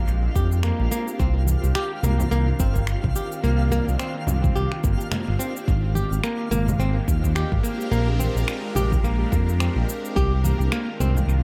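A smooth, up-front synth bass with portamento and vibrato anchors this meditative organic downtempo excerpt in C minor at 107 BPM. Its swung 16th-note feel is carried by a deep electronic kick, layered shaker and finger snaps soaked in dub echo, and very quiet, ringing congas. A fingerpicked flamenco guitar, warm and acoustic with audible finger squeak, plays arpeggios through tape echo. A tense, string-like bowed drone with phaser and sidechain pumping holds sustained chords under a sparkling, twinkling granular texture with octave-up shimmer, as the echo-heavy mix moves from Bb13 to Cm9 at 1.2 seconds and through Abmaj9#11 at 5.7 seconds before circling back.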